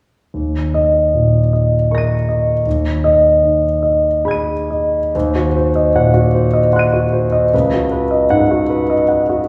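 A lush recital hall reverb surrounds this recording, with the sense of listening from further back in the room alongside a smaller room's ambience. Within that space, a single concert grand piano sits present and up front, its intimate, polished tone carrying audible action noise, deep bass and a long sustain. This is impressionist classical solo piano in 3/4, played with a flexible rubato and tuned to A4 = 435 Hz. The mood is mysterious and wistful: an Eb5 chord sounds at 0.3 s, Abm/Eb harmony follows, and a new section arrives at 5.1 s on Ebm6 before moving to Db9sus4. The piano ranges from Db2 up to Eb7, and this fragment, cut from a longer piece, ends at 9.5 s.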